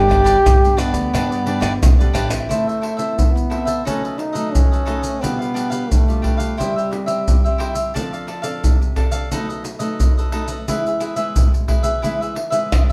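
A punchy, close-miked trombone with light vibrato carries a nostalgic, yearning jazz-style melody over a samba and choro groove in A minor at 88 BPM, backed by crisp picked cavaquinho, small fingerpicked nylon-string guitar, a woody, growly pizzicato upright bass that drops out at 2.5 seconds, and up-front percussion of deep surdo, soft-handed pandeiro, tamborim and maracas in a live room with wet reverb, with the trombone ending at 7.6 seconds and a drum fill arriving at 12.7 seconds in this fragment of a longer piece.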